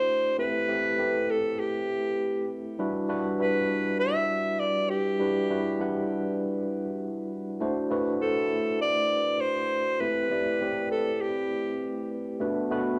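Wrapped in cassette tape and a wet studio reverb, this slick, bittersweet pop excerpt in E minor moves at 100 BPM, with a whispered, intimate alto saxophone carrying the soft-attack melody up front until 12.1 seconds over a clean, tine electric piano that plays its chords with subtle chorus through built-in speakers, drifting from Am7 to Em7 and D7, back to Am7 and on to Bm7.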